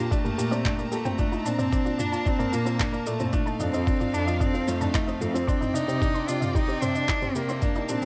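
Intimate and cinematic, this short cut of piano and strings electronica pairs a clear, boxy solo cello melody with a dark, woody upright piano riff carrying audible action noise, over sustained chords from a focused studio string section and warbling, vintage pluck arpeggios with tape echo in the background, while a muted, veiled cello section holds the bass from 0.4 s and a muffled, thumpy kick sits up front beside a layered deep house kit of handclaps, shaker and toms.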